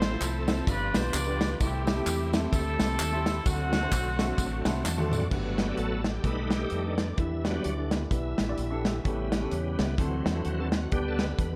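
Uptempo gospel at 129 BPM in G major, reverent and jubilant, with a swung 4/4 groove from an up-front, dark-toned studio drum kit with a tight kick and a round, deep dub electric bass, while a shouting tonewheel organ with slow rotary speaker and chorus vibrato holds chords alongside a woody upright piano set in the background. A tight, vintage jazz-style horn section with light vibrato and tape echo carries the melody over tambourine, egg shaker and group handclaps until about 5 seconds, when piano, organ and drum fills lead into an organ solo backed by a distant, very quiet French horn section. The whole mix is dreamy and soaked in plate reverb, and the passage is cut from a longer piece.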